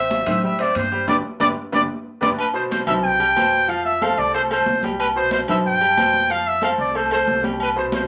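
A punchy trumpet with light vibrato and scooped notes leads this joyful, sunny salsa excerpt at 184 BPM in C major, sitting up front over clear grand piano and woody, thumpy pizzicato upright bass from the start, while bright high-tuned congas enter at 0.1 seconds and ringing timbales and agogo bells at 0.3 seconds, sounding distant as if in a large room, with a band accent from 1.1 to 2.4 seconds over chords moving from Am7 and G to alternating C5 and F, all bathed in a wet studio reverb.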